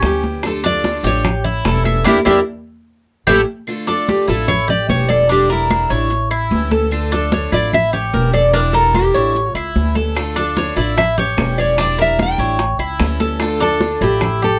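Nostalgic Cuban son and guajira at 148 BPM in D harmonic minor, where an up-front, full-bodied fingerpicked nylon-string guitar carries the melody over metallic double-string tres arpeggios, a dark, thumpy gut-string upright bass, a boxy picked archtop guitar, ringing high-tuned congas, woody claves and round, vintage-sounding bongos heard from 0.0 to 3.4 seconds and again from 10.2 seconds, cycling through Dm, A7 and Em7b5 with a band accent and drum fill before the second section begins at 3.7 seconds, all captured by close, detailed microphones with light reverb.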